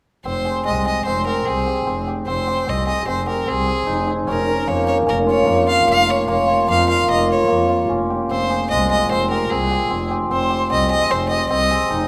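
Bathed in moderate recital-hall reverb, this hypnotic, restless contemporary chamber piece in 5/4 at 150 BPM in F minor, cut from a longer work, sets a clear, focused bowed violin melody with vibrato up front beside mellow, shimmering, ringing hammered cimbalom arpeggios, while a single warm bowed double bass with a soft attack and expressive portamento anchors the low end as the harmony moves from Fmadd9 to Bbm/F to Fm9.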